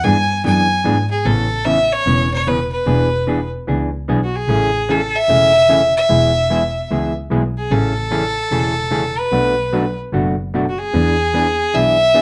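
Western swing country with a playful, down-home lilt, this short cut from a longer piece puts a clear, intense bowed fiddle up front on the melody with light vibrato, over a dark, clean hollow-body electric jazz guitar comping with the fingers and a woody, bowed double bass played sul tasto, all in a moderate club reverb as the chords move through E7, Amaj7 and Bm7.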